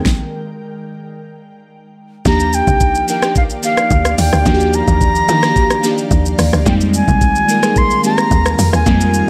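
Amapiano at 109 BPM in Eb major, this relaxed, warm excerpt opens with glassy digital keys, treated with chorus, and an ethereal, detuned pad whose slow attack is shaped by ensemble chorus, phaser, reverb and sidechain pumping. A produced R&B kit enters at 0.1 seconds, with a knocking kick, fat snare, metallic hats, rim click and shaker sitting up front. At 2.3 seconds the drop arrives on an Ebmaj9 chord, bringing in a tight, punchy log drum bass with a fast attack and a percussive decay. At the same moment a concert flute takes the melody in a pure, straight tone, tongued and up front, trailed by tape echo. The harmony moves to Fm11 at 6.7 seconds, and the whole passage sits in a digital ambience.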